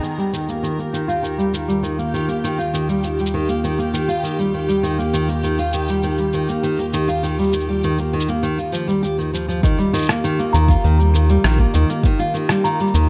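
A muffled, pitched-down electronic shaker and rim click set a straight 4/4 pulse at 100 BPM in this pastoral, delicate folktronica excerpt in Eb major, with the drums carrying a studio reverb. Fingerpicked nylon-string guitar arpeggios sit up front with a full-bodied classical tone, passed through a low-pass filter and tape echo, and a filter sweep runs across them until 9.6 seconds. Beneath them a warbling, nostalgic pad holds sustained chords with chorus and its own reverb, while a reversed, granular texture swells brightly in the background until 9.7 seconds. At 9.6 seconds a deep electronic kick enters alongside a tinkling music box line with tape echo. A round, dark analog bass joins up front at 10.5 seconds, and the excerpt sits in light reverb, opening on an Ebadd9 chord.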